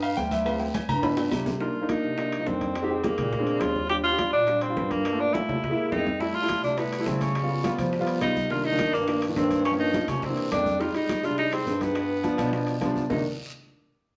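A live band recorded together in one large studio room is bathed in wet reverb on this fiery, sophisticated excerpt of Afro-Cuban jazz in C minor, moving at a straight 209 BPM in 4/4. A warm grand piano comps up front and takes a short solo spot over the opening 1.6 seconds, while a mellow, distant bass clarinet carries the bass line with light vibrato and scooped notes. Beneath them sit ringing congas struck with hard hands, background agogo bells and metal-shell timbales, very quiet low-tuned cowbell and bongos, and a raspy, dry guiro that is heard briefly at the start and then returns at 6.2 seconds. At 1.6 seconds a clear, vintage tenor saxophone takes the melody up front with vibrato over rich changes such as Cm9, Fm9, Ebmaj9 and Db7#11, with drum fills marking the turns.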